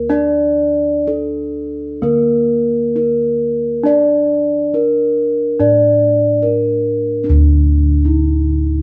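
A straight 4/4 pulse at 61-74 BPM carries this hypnotic, shimmering Javanese gamelan passage, cut from a longer piece, as a mellow bronze metallophone struck with padded disc mallets rings out the melody up front, a dark, smooth metallophone played with a wooden mallet accompanies until 7.3 s, and round, beating bossed gongs hold the bass, the band playing live together in one room with moderate studio reverb.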